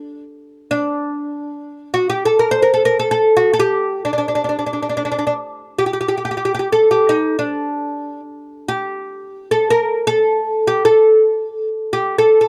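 A lone fretless oud, woody and plectrum-plucked on its double strings, sits up front in a dry, close 1970s-style studio sound, unfolding a melancholic, hypnotic Arabic maqam hijaz on D in free time between D4 and C5, tuned to A4 = 438 Hz, with its opening idea returning at 8.5 seconds in this short cut from a longer piece.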